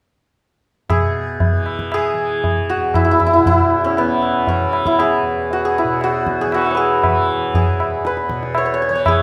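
A bright, ringing santur sits up front, carrying the melody from 0.9 to 9.2 seconds in this serene, meditative fragment of Hindustani classical music in raga bhupali on E, at 118 BPM in a straight 4/4. Beneath it, a softly plucked tanpura holds a buzzing low drone, while a high-tuned, close tabla keeps time. The moderate reverb of a recital hall lends the trio a calm, spacious air.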